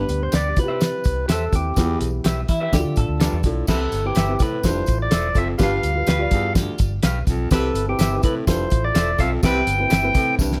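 A dry, up-front drum kit with a fat snare and tight kick sits under light reverb in this uplifting, danceable stretch of uptempo 1960s-style soul at 125 BPM in 4/4, with a percussive, key-clicking tonewheel organ carrying the melody through a stopped rotary speaker over a woody, boxy upright piano and a round, foam-muted electric bass. A raspy, growling baritone saxophone drives a low riff, a slightly broken-up, lo-fi electric guitar adds stabs, and a jingly tambourine sits in the background. A clean, hollow-body semi-hollow guitar plays a second riff from 2.5 seconds, a horn section with light vibrato and octave doubling brings a smooth second line from 3.7 seconds as the chords move through Cmaj7 and Fmaj7, and a drum fill arrives at 10.4 seconds.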